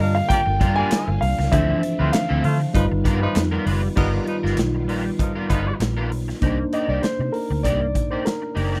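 Polished 1980s jazz-funk pop with a nocturnal, bittersweet mood, this brief swung excerpt rides a round, foam-muted fingered bass up front and a punchy modern studio kit with crash, hi-hat and snare, while a worn, lightly overdriven tine electric piano with lush chorus and a twangy, slightly broken-up picked guitar riff run throughout. A dark, mellow baby grand carries the melody with audible action noise, dropping out after 3.0 seconds and returning at 6.7, as a tight vintage horn section with soft attack and light vibrato plays a second line until 5.7 seconds. A swirling, warbling phased string machine holds very quiet sustained chords and hollow group handclaps sit in the background, all in a close, dry sound with little reverb.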